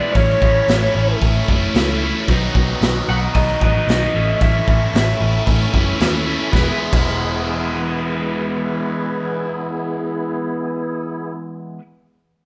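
A roomy, live-in-one-room sound with large studio reverb carries this driving, swaggering blues rock and southern rock power-trio excerpt at 113 BPM in E major, where a bright, double-tracked stack guitar riff with phaser sits up front over a dark, round, foam-muted picked bass and a gritty, punchy garage drum kit that stops at 7.1 s, while a percussive tonewheel organ with slow rotary speaker holds sustained chords in the background and an overdriven lead guitar from a small cranked amp plays a brief melody until 5.4 s.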